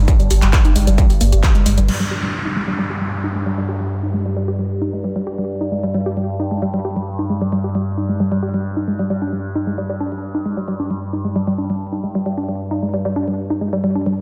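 Dark and hypnotic, this excerpt of driving peak-time techno opens with its full weight for barely two seconds: a distorted, overdriven electronic kick, a round, deep sub bass with overdrive and sidechain pumping, and an overdriven techno kit of crash cymbal, handclaps, hi-hat and shaker. By 2.0 s the kick, kit and bass have fallen away, and an electronic downlifter runs from 1.9 s until 5.5 s. Holding the whole passage together is a resonant drone with moving overtones, ring modulation and a slow attack, colored by chorus and its own built-in reverb and pumping under the sidechain. Up front sits a woody, wave-folded pluck riff between F3 and G4, percussive and dark, smeared by chorus, cassette tape character and tape echo. A moderate plate reverb soaks the mix in a dreamy haze that lingers after the beat drops out.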